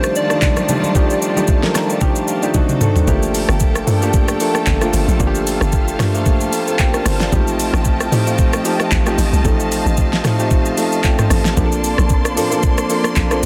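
A dense, heavily limited modern mix with light digital reverb frames this soulful, hypnotic amapiano cut from a longer piece, swinging at 113 BPM in G minor while an intimate, boxy grand piano with audible action noise and lush, bowed strings with sidechain pumping carry rich chords from Ebmaj9#11 to Bbmaj9. A round, FM-keyed synth lead with chorus and delay sings a brief background melody, very quiet vintage congas tap along until 3.1 seconds, and the up-front electronic kit brings a knocking kick, fat snare, metallic hats, claps, shaker, rim click and toms. A drum fill leads into the drop at 3.1 seconds, where a tight, punchy FM log drum bass with a noise layer enters, and the piano adds a fill just before the drop and two more after it.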